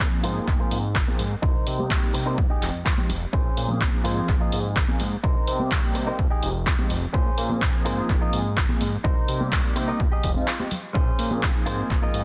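This excerpt of filtered disco house opens with a dry, punchy electronic kick sitting up front, a fat, detuned sawtooth bass and mellow synth brass, all running at 126 BPM in a straight 4/4 with a groovy, nostalgic mood. The brass is round and dark, thickened by chorus and phaser, and both it and the bass pump with the sidechain while a low-pass filter sweep runs across the whole 12.2 seconds. A punchy analog drum machine supplies dry handclaps and hi-hats that also pump, and a very quiet layer of close, bright tambourine and hard-handed congas fills in underneath. At 0.2 seconds a clean, compressed electric guitar recorded direct joins with a picked riff, likewise pumping and filtered. The harmony cycles through Ab69, Cm7, Fm9 and Bbm9, with a brief break at 10.5 seconds before the loop returns to Ab69. Light reverb and a dense, heavily limited modern master keep the groove tight and loud.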